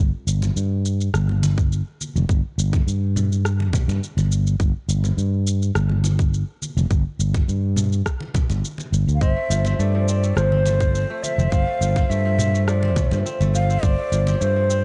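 A growly, amped fretless electric bass opens this hypnotic, mystical slice of organic downtempo at 0.0 seconds, sustaining up front in a low register with a sidechain pumping effect at 104 BPM in a straight 4/4. Electronic shaker and rim click follow almost at once, joined by congas struck with hard hands that sound distant, as if in a large room, and a tight, produced electronic kick drum sitting up front, with studio reverb on the kick and the shaker and rim click. The harmony rests on a G5 chord until it moves to Dm7 at 9.2 seconds. A breathy ney enters at 9.1 seconds, an end-blown reed cane voice with vibrato, tongued notes and lifted highs, colored by vintage 12-bit sampler grit and delay. At 9.2 seconds a fingerpicked kora adds ringing, crisp arpeggios through tape echo. The overall production is dark and warm within a small room ambience, and the passage is cut from a longer piece.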